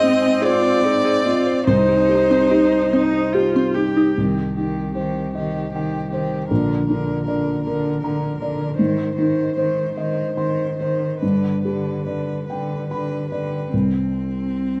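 A dark, softly reverberant studio sound frames this reflective, longing neoclassical passage in C minor, moving in a rubato 6/8 at about 47-53 BPM. A felt-muted upright piano sits up front, mellow and intimate, beneath a smooth, vibrato-laden solo violin melody and a focused cello line. A clear viola and a glassy, chorused wavetable pluck with tape echo add accompaniment and background arpeggios until about 4.2 seconds, and after the violin drops out at 13.7 seconds, piano and cello play alone to the end at 14.8 seconds.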